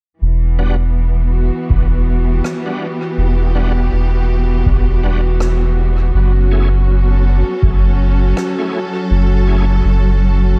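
Hazy and deep, this short ambient dub excerpt moves at an unhurried, swung pace. A round, soft sub bass sits up front beneath a lush bowed string section holding sustained chords, moving from Em7 to F#m7 at 6.1 seconds. A bright, shouting tonewheel organ adds stabs coloured by light overdrive, chorus vibrato, a fast rotary speaker and dub echo, sitting low in the mix. An analog electronic kick, tape-toned and very quiet, enters at 1.7 seconds, joined by a natural acoustic rim click in the background that trails dub echo. The production is dark and warm, set in a small room ambience.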